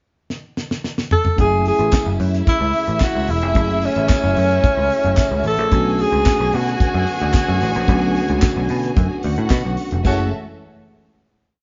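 A breathy, scooped tenor saxophone leads this sultry, danceable disco piece in F# minor at 111 BPM, entering at 1.1 seconds over a damped 70s kit whose fill opens the pickup bar. At 1.4 seconds it is joined by a growly, foam-muted picked bass with chromatic approach notes, lush bowed violins in long high lines, a mellow tine electric piano holding rootless chords in the background, and a very quiet sustained string pad with portamento. A jingly tambourine on the backbeat follows at 1.9 seconds. All move between F#m9 and Bm7 in a single room with light reverb before settling on a final F#m9 chord at 10.1 seconds.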